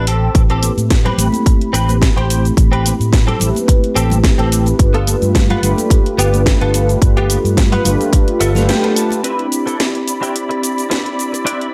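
Groovy and feel-good, this nu-disco excerpt moves at 108 BPM in C major with a light 16th-note swing, cut from a longer piece. A punchy electronic kick sits up front beside a house kit of hi-hat, shaker and cracking snare, both tape-warm and re-recorded in a small room, while very quiet, high-tuned congas add bright, close and dry hand hits. A dark, round fingered electric bass with tube saturation anchors the Am7 and G9 changes until 8.7 s, where a band accent lands midway through a clean electric guitar fill. The direct-recorded guitar plays a compressed, picked riff through ensemble chorus, a low-pass filter and slapback echo, alongside mellow, brassy synth brass in a sustained accompaniment with detuned sawtooth tone, vibrato, chorus, cassette tape colour and slapback echo, as a filter sweep on an analog polysynth runs through the opening section. At 9.2 s the harmony settles onto Cmaj9 and a veiled, con sordino chamber string section enters with soft-attack sustained chords, low-pass filtered and pumping against the sidechain, all in a light reverb.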